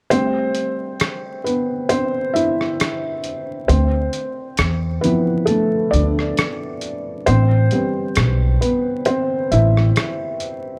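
A lazy, lightly swung lo-fi hip hop groove from a gritty, compressed sampler-style drum kit of hi-hat and rim click carries a felt-muted upright piano, dark and intimate with audible action noise and a cassette-tape haze, while a woody pizzicato upright bass sits up front from 3.7 to 9.9 s beneath Am9 and Dm9 chords, all wrapped in vinyl crackle and light reverb for a nostalgic, melancholic mood in this short cut from a longer piece.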